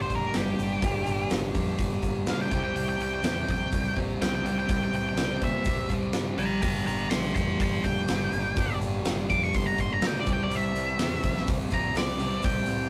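Classic rock with a gritty, driving mood at 124 BPM in G dorian, this cut from a longer piece features an up-front, dark octave-fuzz lead guitar soloing over a Gm–C vamp, backed by a sludgy distorted guitar riff, a warm, compressed overdriven guitar riff in the background, a growly fingered bass with fuzz, a huge arena drum kit with a fat snare and punchy kick, and a very quiet, grainy egg shaker, all set in a moderate stone room with a rough rehearsal-room, tube-saturated sound.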